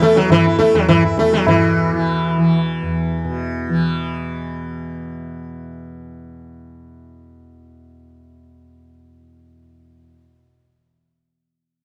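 A plectrum-plucked sitar leads this brief Hindustani classical excerpt, its buzzing tone ringing with sympathetic strings and a shimmering glow as it carries the melody up front between E3 and E4 until 2.6 seconds. Beneath it, a softly plucked tanpura drone sits close in the mix, spanning E2 to E3 and sustaining through to 10.8 seconds, long after the other parts fall away. A low-tuned tabla with a short ring and a small-room character provides percussion for the opening 1.6 seconds. The pulse moves briskly at 208 BPM in a straight 4/4, and the mood is radiant and devotional. Moderate studio reverb and a dark, warm production give the acoustic instruments a gentle sense of space.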